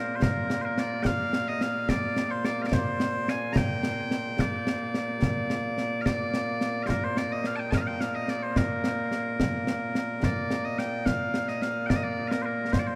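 Ceremonial and proud, this short cut from a longer piece of Scottish traditional pipe music in 6/8 and Bb major moves at 72 BPM, with loud, piercing, continuous solo bagpipes carrying the melody up front from the start while concert snare and bass drums, close and acoustic with bright cymbals, join at 0.2 seconds, all ringing through the long, echoing wash of a vast cathedral, and a new section arrives at 10.2 seconds.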